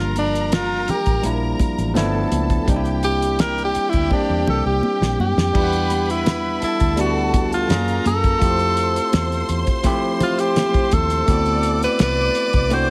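Light reverb and a small-room ambience frame this romantic fragment of lush 1970s-style soul at 84 BPM in 4/4, where a clear, up-front tenor saxophone carries the melody with vibrato and subtone, soloing over the opening 5.5 seconds as a drum fill runs from 4.1 s. Beneath it, a rich bowed string section supplies a smooth second line, a bell-like tine electric piano adds clean, bright accompaniment, and a round, foam-muted fingered bass sits dark and amped at the bottom. A damped drum kit with a fat snare, tight kick and dark cymbals enters at 0.2 s alongside high-tuned congas tucked in the background, as the harmony moves from Gm9 through Em9 and F#maj9 to D13.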